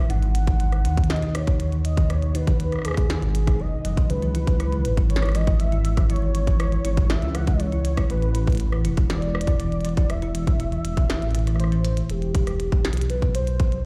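Intricate and eerie, this excerpt of IDM moves at 120 BPM in a straight 4/4, tuned slightly sharp to A4 = 441 Hz, as chords drift from G#m7 through C#m7 and Am to Em. A deep, rumbling detuned saw bass sits up front beneath a tight electronic kick and a glitchy kit of clicky hats, rim clicks and a tiny snare, while a woody, ringing kalimba spins arpeggios through digital delay and a velvety synth lead sings the melody with chorus, vibrato and dub echo. The whole mix sounds as if played on a big system in a bare stone room, and the kick falls away from 11.1 to 12.1 seconds, a gap during which the kalimba stops at 11.9 seconds.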